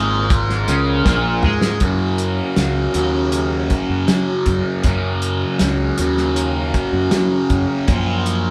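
A straight 4/4 pulse at 79 BPM carries this trippy, hazy psychedelic rock excerpt in Gb major, where a bright, double-tracked fuzz guitar riff with phaser sits up front over a punchy, overdriven fingered electric bass, a cloth-damped acoustic drum kit with a fat snare, tight kick and rolled-off top enters at 0.3 seconds and plays a fill from 1.1 to 1.8 seconds as the harmony moves from Bb5 to Gb, and a reedy accordion with slow beating holds sustained chords in the background, the band playing live together in a moderate stone room.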